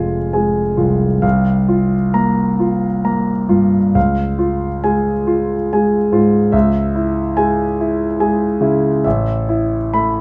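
A warm concert grand piano, natural and up front with a deep bass, carries this wistful, nocturnal fragment of impressionist classical solo piano alone from 0.0 to 10.2 seconds, spanning F1 to B5. The music moves slowly in 6/8 at 44-50 BPM in dotted quarters with a free rubato feel, tuned to A4 = 441 Hz, and its harmony drifts from F minor through C7sus4 to D-flat, darkens to D-flat minor, and settles on Asus2. A moderate large studio reverb lends the piano a gentle sense of space.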